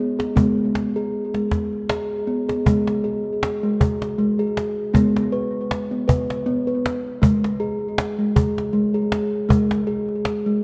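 A steel tongue drum opens the recording, ringing out round, pure arpeggios struck with firm rubber mallets, and a cajon joins at 0.2 seconds with a woody, close tone and faint snares. This is meditative world music at 79 BPM in 3/4, with a lightly swung feel and a gentle, hypnotic mood drawn from a G# hirajoshi scale. The tongue drum sits up front with a bright sheen and tape echo, moving between G#3 and B4 as the harmony alternates between G# minor and passages with the chord dropped away. Both parts sit in a moderate concert hall reverb that lends the acoustic playing a spacious bloom. Cut from a longer piece, the passage shifts into a second section at 2.7 seconds, and the cajon stops at 10.4 seconds just before the tongue drum closes at 10.6.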